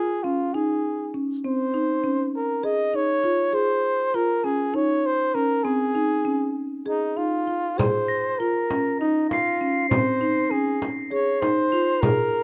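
Contemporary instrumental chamber music in 7/8 at 199 eighth-note BPM in Db major, hopeful and shimmering, as a breathy, whispered flugelhorn with vibrato carries the melody up front over mellow, woody arpeggios from a marimba played with soft mallets. A small, bright, compressed frame drum enters at 7.8 seconds and ringing, bell-like crotales at 8.1 seconds, all set in light reverb with close, detailed microphones through Dbmaj7, Dbmaj13 and Bbm9 harmonies in this short passage cut from a longer piece.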